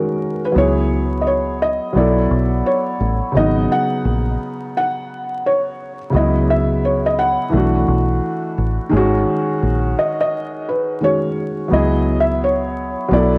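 A lazy swing on the sixteenths in 4/4 carries this hazy, reflective lo-fi hip hop excerpt, cut from a longer piece, where a felt-muted upright piano plays both the melody and the accompanying chords up front, soft and intimate, with thick felt and a mellow, tape-worn cassette tone. A deep dub fingered electric bass enters at 0.6 seconds, round, foam-muted and dark, sitting close and direct beneath chords that drift through minor sevenths, elevenths and suspended colours. A light reverb, vinyl crackle and the grain of a home cassette recording wrap the whole in a dusty, private haze.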